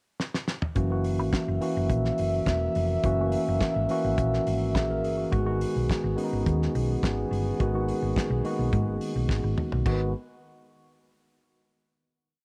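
A four-on-the-floor disco beat at 106 BPM opens on a damped 70s drum kit with a fat snare, tight kick and open hats on the off-beats, its fill in the 0.8-second pickup leading into a sultry, danceable G# minor verse where a round hollow-body bass plays a syncopated line with chromatic approach notes, a clean, up-front tine electric piano pushes drop2 chords with grace notes and short fills, and a French horn section holds a sustained pad with light vibrato over F#7 and G#m7, all in a small room with light reverb before a second fill at 9.3 seconds brings the final chord.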